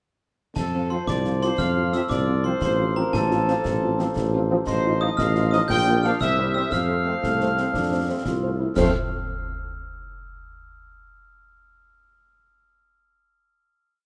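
A proud, rousing military-style march for wind band in 6/8 at 117 BPM in F major begins at 0.6 s with a dark, distant trumpet section carrying the melody, doubled at the octave by a bright, sparkling glockenspiel struck with hard plastic mallets, over a mellow tuba placed up front with bass on the beats, a woodwind section with a smooth top sustaining chords in the rhythm of the tune, and a concert snare drum, clash cymbals and concert bass drum marching on the beat. A French horn section with light vibrato joins at 0.7 s, adding tight after-beat chords, and a soft-attack trombone section follows at 0.9 s, giving short accented chords that answer at phrase ends, all set in a moderate scoring-stage reverb before a final chord at 8.8 s.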